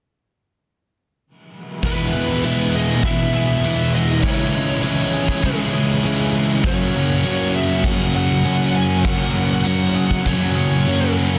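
Hazy and dreamy, this short excerpt of shoegaze-tinged rock and dream pop moves in a straight 4/4 and settles into a layered wall of guitars from 1.8 seconds. A dark, thick fuzz guitar, drenched in distortion and lush chorus, shares the riff with an up-front overdriven electric guitar whose reverse reverb blurs its attacks into a ghostly bloom. Beneath them, a clean, compressed guitar recorded direct picks very quiet arpeggios, while a smooth overdriven lead guitar sings the melody through tape echo. A huge arena drum kit, all hall sound and pumping room, drives things with a punchy kick and hi-hat. The harmony drifts from E to C#m to F#add9, and the dense, heavily limited master keeps the whole haze pressed close and loud.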